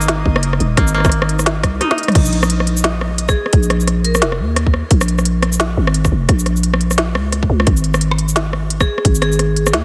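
Dark and spacious, this excerpt of half-time drum and bass runs at 174 BPM in 4/4, with a swung sixteenth-note feel over a digital ambience. A growling, buzzy 808-style bass with a fast attack and decaying tail sits up front for the whole passage, alongside an overdriven organic electronic drum kit with a woody snare, smooth hats, rim clicks, shaker, toms and crash, re-recorded in a large room. A tight, layered electronic kick with its own overdrive joins at 0.3 seconds. At the opening, a koto plucked with fingerpicks plays dry, acoustic arpeggios through dub echo until 4.1 seconds, while a reversed, dreamy, detuned texture with granular grain and built-in reverb swells in the background until 2.2 seconds. A drum fill from 1.8 seconds and a band accent at 2.1 seconds lead into the drop's second stretch, where a bright, metallic vibraphone struck with hard mallets rings in the background with medium vibrato and dub echo in two brief melodic phrases.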